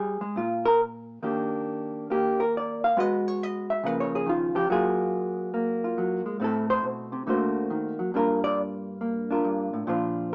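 A clean, dark hollow-body electric guitar, played with the fingers and sitting up front, carries this short solo jazz excerpt alone, its swung eighths loosened by rubato for a swinging, sophisticated mood. After a brief opening before any chord sounds, the harmony moves through rich changes such as Ebmaj7, Abm7, Db13 and Gbmaj7 before turning to Amadd9, D7b13 and Gm7. Light reverb and a small-speaker quality frame the guitar.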